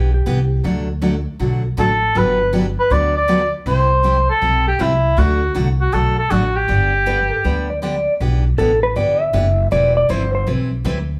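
A swung 4/4 at 159 BPM in G major sets up this down-home western swing fragment, with a woody, thumpy gut-string upright bass plucked up front beneath a bright, full-bodied picked acoustic guitar. At 1.8 s a mellow cor anglais takes the melody in a classical style with light vibrato, up front yet carrying a distant, roomy quality. A dark, compressed clean lap steel played with a slide and volume swells, heard briefly at the start, returns at 7.1 s, and an electric slide guitar solo arrives at 8.2 s, all within a moderate large-studio reverb that gives the live band its shared-room feel.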